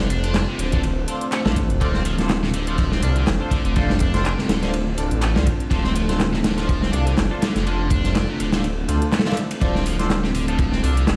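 Energetic and gritty, this 123 BPM breakbeat excerpt in D minor rides a crunchy, punchy breakbeat kit of kick, snare and dark ride with layered electronic handclaps and hi-hat, a thick, menacing detuned saw bass up front, a bright high-gain double-tracked guitar riff with delay, nasal band-passed chord stabs with phaser and sampler grit, and a deep, moody pad with sidechain pumping in the background, all sitting in a small room with large studio reverb and vinyl crackle as the kick drops out from 8.6 to 9.6 seconds.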